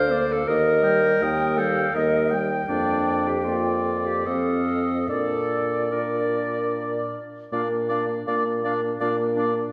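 Heard from further back in a wet scoring-stage reverb, this lyrical, warm passage from a slow romantic classical movement for wind quintet unfolds in a rubato 3/4 at 71-83 BPM in Bb major, with an airy, distant silver flute carrying the tongued melody with vibrato over the oboe's second line, a clear, smooth clarinet and a mellow French horn filling the accompaniment, and a dark bassoon sitting up front on the bass as the harmony moves from Eb through Bb/F and F7 to Bb at 5.1 seconds.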